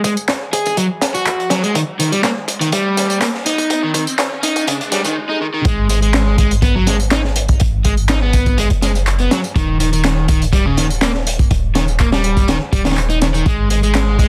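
A straight 4/4 breakbeat groove at 123 BPM in G# minor drives this swaggering, gritty excerpt, with a crunchy, saturated drum kit (punchy kick, high-tuned snare and rolled-off top) sitting up front beside an analog-flavored electronic tambourine and handclaps, while a dark, overdriven semi-hollow guitar riff runs through the whole passage. The opening build-up sweeps a filter across the guitar as a background riser and swell climb, leading into a drop at 5.7 seconds. There a deep, boomy 808-style bass with a fast attack and a noise layer enters under the riff, over chords shifting between G#m7 and D#, all inside a dense, heavily limited modern master with light reverb.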